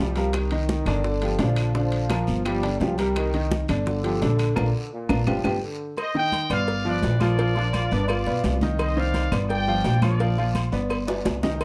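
Fiery and driving, this short salsa cut opens with the full rhythm section and a mellow, roomy trombone section playing a tight second line beneath a bright, worn baby grand piano whose action noise is audible in its intimate, present sound. Up front, a thumpy pizzicato upright bass with steel strings anchors the low end, while a background bed of percussion fills out the groove: damped, thick-skinned congas, low-tuned bongos and cowbell struck with hard hands, ringing metal-shell timbales and agogo bells in a live room, distant woody claves, and a raspy, saturated guiro. The harmony moves between Cm7 and G5 before a Bb chord arrives with a band accent and drum fill from 4.6 to 6.0 seconds. At 6.0 seconds a punchy, vintage trumpet section takes the melody up front with vibrato and tight pop-style phrasing, and the trombones drop out at 8.7 seconds. Another drum fill closes the passage as the chords settle on G, all set in a dark production with light reverb.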